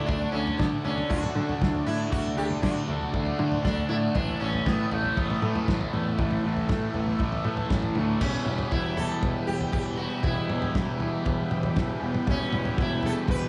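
A buzzing, shimmering sitar melody with tape echo opens this hypnotic, mysterious psychedelic rock excerpt at 118 BPM in E dorian, joined at once by a bright, double-tracked fuzz guitar riff with distortion and phaser sitting up front, while a vintage combo organ holds light-vibrato chords in the background. A bright, direct picked bass and a dry, damped 70s drum kit with a fat snare, tight kick and dark cymbals enter at 0.1 s, all inside a small room's light reverb. The harmony moves from Dmaj7 to Aadd9 before settling onto E minor at 8.2 s for the new section.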